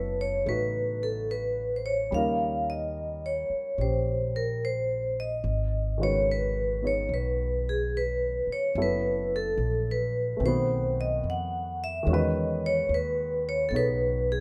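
Up-front vibraphone, played with medium hard mallets, carries the ringing, metallic melody with a medium motor vibrato over a dark, mellow grand piano and a woody, thumpy pizzicato upright bass in this intimate, tender jazz ballad excerpt in E major at 72 BPM with swung eighths, its dry sound moving through F#m7, D#7, G#m7 and B7b9 before settling on Emaj9 at 12.1 seconds.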